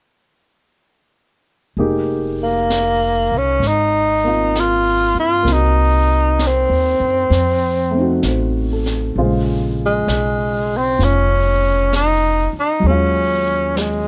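At 1.8 s a warm grand piano with audible action noise, a woody, thumpy pizzicato upright bass up front and a distant, roomy brushed drum kit with a high-tuned snare open this intimate, smoky jazz ballad excerpt in F minor at 65 BPM with a swung feel, and at 2.4 s a breathy, whispered tenor saxophone takes the up-front solo melody with subtone, vibrato and scooped notes over Fm11, Cm7b5, F7b9, Bbm7 and Ebm11 chords in a dry mix.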